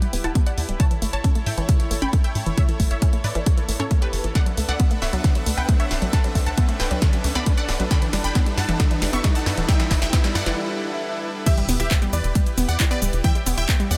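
Uplifting trance at 135 BPM in E dorian, bittersweet and driving, with a bright detuned supersaw pad, a tight sawtooth sequencer bass, a phased unison-pluck melody and unison-pluck arpeggios under filter sweeps and tape echo, all pumping with sidechain, while an overdriven electronic kick and a punchy analog drum machine with crash, claps, hats, shaker and snare push through a riser and drum fill to a brief break at 10.6 seconds, before the drop and an impact land at 11.5 seconds, where a round, chorused analog pluck adds a quiet second line in the background.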